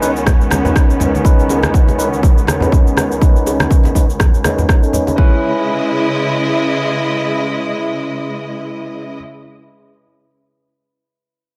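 Afro house at 122 BPM in C# minor with a hypnotic, spiritual feel, this excerpt sets rich, bowed studio strings holding sustained chords up front against bright, bell-like tine electric piano stabs with delay, both pumping from sidechain and filter-swept over Badd9/C# through the opening 5.2 seconds, while a punchy, tape-warm electronic kick, cabasa and rim click, low-tuned congas with hard hands and very quiet high-tuned bongos drive the groove until about 5.2 seconds, after which strings and piano carry on alone over C#m7 in a dreamy mix soaked in plate reverb.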